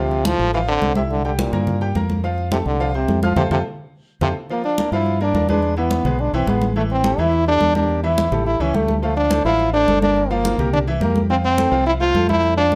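A clear, up-front trombone carries the melody with light vibrato in this sunny, festive salsa excerpt in F major at a brisk 212 BPM. A bright, vintage grand piano with long sustain accompanies, while a dark, round fingered electric bass anchors the low end and ringing, hard-hand congas join at 0.1 s. A band accent and fill lead into a new section at 4.5 s, where the harmony moves from Gm7 through A7 to settle on Fmaj7, all under a light reverb.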